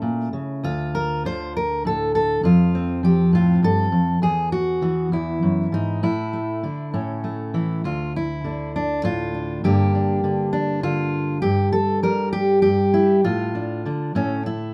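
A fingerpicked steel-string acoustic guitar opens the piece alone, its full-bodied tone sitting up front in a modest small-room reverb. This short folk passage moves at a slow, rubato 66 BPM in a lilting 6/8, and the mood is melancholic and wistful. The first half drifts through D minor, F and E before resting on a suspended A that resolves to A major. From 7.9 seconds the music settles firmly in D minor, passing through G minor and a brief chordless stretch before landing on D minor over A and closing on A at 14.2 seconds. The guitar spans from a deep low D up to a high C, giving the solo a rich, intimate sound that feels lifted from a longer piece.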